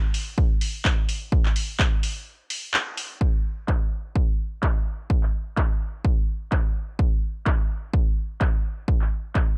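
A punchy analog drum machine opens this funky, nostalgic house cut, its handclaps and hi-hats arriving at 0.1 seconds under a filter sweep, with the hats pumping against a sidechain and both snare and hats softened by low-pass filtering. An up-front electronic kick drum joins at 0.4 seconds, dry and forceful, driving a steady 127 BPM in 4/4 with a light 16th-note swing of 55%. The groove drops into a break at 2.3 seconds, marked by a band accent at 2.7 seconds, before the beat settles back in for the longer second stretch of the passage. The sound carries a gritty hardware character with a cassette-tape tint and a touch of digital ambience. It is a short excerpt lifted from a longer track, built entirely around its drums.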